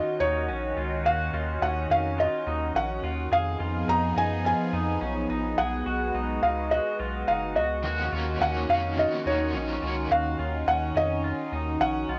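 Hazy cassette-worn sound with a modest booth ambience and a dulled top end opens this dreamy, blissful dream pop excerpt at 106 BPM in a straight 4/4, moving through D#m9, Fm7b5 and G#m7/B before returning to D#m9. A felt-muted upright piano carries the melody with soft, intimate tones and audible action noise under tape echo, while a swirling, detuned analog pad holds phased, chorused chords and a slightly broken-up, twangy electric guitar through a small old amp picks arpeggios. A round, deep analog bass enters at 0.2 seconds, and an overdriven semi-hollow guitar with tremolo and lush chorus adds bright accompaniment from 7.8 to 10.1 seconds.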